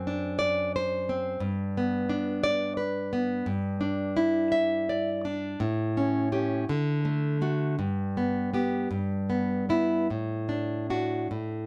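In 6/8 with rubato, moving at roughly 49-60 BPM in dotted quarters, this romantic solo classical guitar piece opens in G major and settles into D major from 3.5 s, its mood sunny and nostalgic. The fingerpicked nylon-string guitar sits up front with the warm tone of fresh strings and audible finger squeak, ranging from F#2 to E5 as chords pass from D7/F# and G through Em7/G and A7, arriving on D/A at 10.1 s. A moderate small-room reverb gives the playing an intimate glow across this 11.7-second cut from a longer work.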